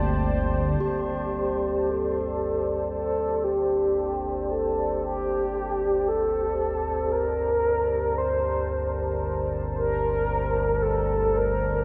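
Ominous and dark, this dark ambient drone piece, cut from a longer work, opens on a Gmadd9 chord held by a deep, moody pad with chorus and its own reverb. Beneath it, a low analog drone warbles through lush chorus and fades in from 0.8 seconds, while a ringing, metallic bronze singing bowl with slow beating sits in the background. At 0.9 seconds a round, horn-like synth lead comes up front, its sustained melody carrying vibrato, chorus and delay, all within a wet cathedral reverb that suggests a vast, echoing space.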